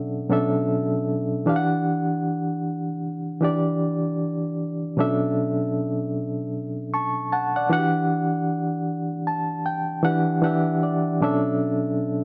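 A wet, reverberant studio sound surrounds this introspective, late-night R&B excerpt, where a solo reed electric piano, barky and lightly overdriven with a fast tremolo and placed up front, moves through swung, minor-key Bm11 and Em9 chords across a short two-part span and adds a fill from 8.9 to 11.2 seconds.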